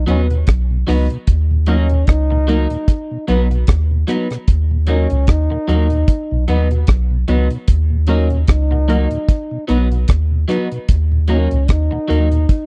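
A breathy trombone with tape echo and a round, soft dub sub bass open this hypnotic, laid-back roots reggae excerpt at 75 BPM in Eb minor, joined at 0.1 seconds by a dark, tight-kicked drum kit of hi-hat, kick and rim click, a slightly broken-up electric guitar with subtle chorus and tape echo, a flute-like tonewheel organ with chorus vibrato and key click in the background, and a muted, detuned sawtooth chord stab with phaser, all in a dry, close 1970s-style studio sound as the harmony sways between B and Ebm.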